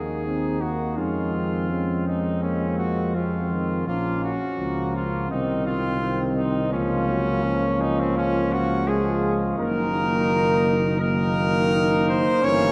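Classical brass quintet music, solemn and grave, unfolds at a rubato 84 BPM in 4/4, with a clear, distant trumpet carrying the melody up front, a dark second trumpet with light vibrato singing the second line, a warm French horn and a close-miked trombone holding the accompaniment in the background, and a smooth-topped tuba anchoring the bass up front, all five voices sounding throughout this 12.7-second fragment of a longer piece in a wet cathedral reverb with a 5.1-second decay.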